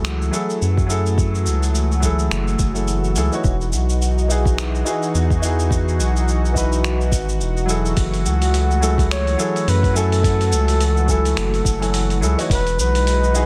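A dry, close sound frames this smooth, wistful sunset chillout excerpt at 106 BPM in F# dorian, with swung sixteenths and chords moving between F#m9 and Emaj9. A polished grand piano with long sustain, filtered and touched by tape echo, plays over a lush, detuned unison pad treated with chorus and phaser, while a round, deep analog bass with tube saturation sits up front. A gritty, compressed sampler-style kit of cabasa, finger snaps and hi-hat ticks along, a soft overdriven electronic kick joins at 0.8 seconds, and at 8.3 seconds a mellow flugelhorn enters with a jazz-style solo of scooped notes and light vibrato, carried on a delay.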